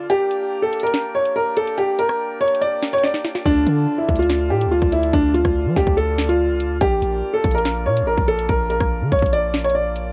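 A half-time drill groove anchors this cold, dark hip hop clip, cut from a longer piece. The electronic drum kit sits up front from 0.1 seconds, with a hard-clipped kick, sharp snare, bright hi-hats and rim clicks, all roughened by vintage 12-bit sampler grit and cassette tape. After an opening break that ends in a drum fill, a deep, long-sustained 808-style bass arrives at 3.5 seconds, its sine tone striking fast, then decaying in a mellow, prominent low end. A clear, woody upright piano carries the melody with a smooth, vintage, tape-coloured character. Beneath it, a hand-pumped harmonium holds reedy, nasal, breathing chords through Gm, Dm and Bb. The dry home-cassette sound keeps every part close and intimate.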